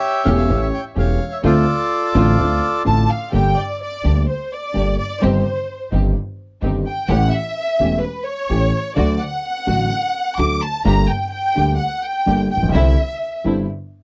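Passionate and melancholic, this tango excerpt moves at 127 BPM in 4/4 with a rubato feel, opening in D minor before turning to G harmonic minor at 3.3 seconds. A reedy, airy bandoneon carries the melody up front, touched with tape echo, and falls silent at 2.8 seconds. Beneath it, a dark grand piano with mellow, long-sustaining tones plays the accompaniment, while a pizzicato upright bass with a woody, steel-strung sound anchors the low end. A string section sits in the background with bowed stabs, smooth on top and marked by vibrato and portamento. At 2.9 seconds a rich, lush violin section enters up front with an expressive second line and takes a solo from 3.3 seconds through the closing bars, moving over chords such as Gm, Cm/G, A7 and Cadd9. The close, dry 1970s-style studio sound carries only light reverb.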